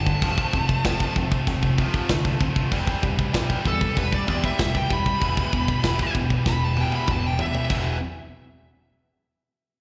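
Heavy and dark, this live heavy metal fragment, heard through a venue's PA with recital-hall reverb, sets a high-gain lead guitar solo with slapback echo and digital delay over bright, picked riffs from a heavy high-gain guitar and a tighter distorted guitar, a growling overdriven bass sitting in the background, and an up-front, tight metal drum kit that plays a fill from 6.5 to 7.7 seconds as the chords move from F through C/E and Em to a closing E5.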